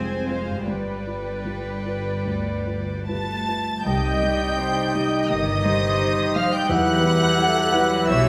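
A cinematic, longing and bittersweet excerpt in a free rubato feel, where a rich, intimate violin section sings the high melody over a second violin line, while a dark grand piano, a woody viola section, very quiet ringing harp arpeggios, and floating cello and double bass sections in the bass fill out the Fm and G7 harmony. A small flute group joins at 3.1 seconds, and at 3.9 seconds a bright clarinet, an oboe and a mellow, tight French horn section enter in the background, the woodwinds adding second lines and the horns holding sustained chords as the harmony moves to Cm and Em. A wet scoring-stage reverb surrounds the ensemble.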